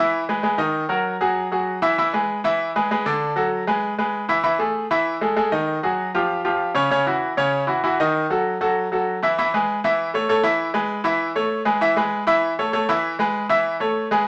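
Set in a wet club reverb, this joyful, danceable Latin cut at 195 BPM in E major features a brilliant, polished grand piano playing solo up front with short sustain from 0.0 to 14.2 seconds, moving through colorful chord changes before settling at 9.4 seconds into a section that alternates between E and A.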